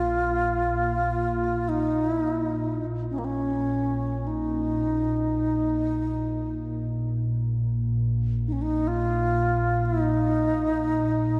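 A dark production steeped in long church reverb frames this haunting, spacious piece of free-time world meditation music in Bb minor pentatonic, where an airy alto flute with vibrato and tape echo sings a tongued melody over a glassy, ethereal FM pad drone with slow attack and ensemble chorus, while a very quiet, metallic bronze singing bowl struck with a felt mallet rings with slow beating until 6.9 seconds.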